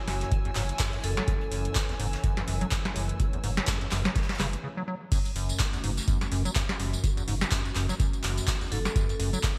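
Driving and trippy, this acid house cut from a longer piece moves at 125 BPM in 4/4 with a swung sixteenth feel, sitting on an F# minor seventh chord. A deep, up-front electronic kick and a booming analog drum machine with crisp snare, handclaps, metallic hats, tambourine and crash under gated reverb carry the groove, while a very quiet brushed acoustic kit adds a distant, roomy layer of hi-hat and fat snare. A squelchy, resonant acid bass riff with filter sweeps, tube saturation, chorus and delay rides over a thick, saturated sub bass holding F#1, both pumping with sidechain compression. In the background a warbling, nostalgic pad of detuned, wave-folded tones carries lo-fi sampler grit and sustained chords, joined until 4.7 s by a dark, intimate bowed string section played sul tasto. A bright vibraphone struck with hard mallets rings out a short A4 figure with delay near the start and again at 8.7 s. 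A brief break arrives at 4.6 s before the drop lands at 5.1 s, all in a bright, 1980s-style digital production with light reverb.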